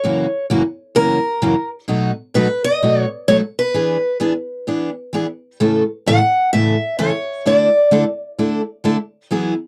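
Swinging at 129 BPM in 4/4, this charming, playful jazz excerpt pairs two picked steel-string acoustic guitars, one carrying a bright, boxy parlour-toned melody until 7.9 s while the other, fresh-strung with audible finger squeak, supplies a concert-toned accompaniment through a F#7, B7, E7, A and Dsus2 progression, both placed up front in a dry, close 1970s-style studio sound with moderate booth ambience.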